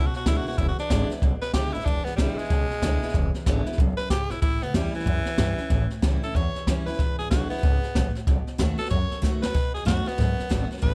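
A raspy tenor saxophone leads this rollicking, retro rockabilly excerpt, its gritty, forceful melody carrying light vibrato and a touch of tape echo over a fast 187 BPM swung groove in E mixolydian that moves from E7 to A7 and back before landing on B7. A bright, full-bodied picked steel-string acoustic guitar supplies accompaniment while a woody, thumpy upright bass holds down the low end with gut-string pizzicato. An up-front jazz brush kit with a high-tuned snare and boomy kick drives the piece from 0.1 seconds, slipping in a quick fill at 9.2 seconds, all set in light reverb.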